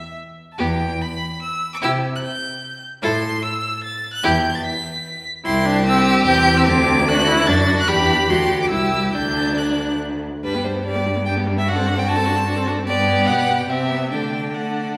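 A lone violin opens this graceful, lively excerpt from a quick classical-period string quartet movement at 147 BPM in 3/4 with a rubato feel, its smooth, even melody up front; at 0.6 s a distant second violin with expressive portamento, a focused viola accompaniment with a smooth top, and an up-front cello bass with soft attacks and gliding portamento join it, all four bowed with rich vibrato, as the music turns from E minor to G major at 5.5 s in the resonant reverb of a recital hall.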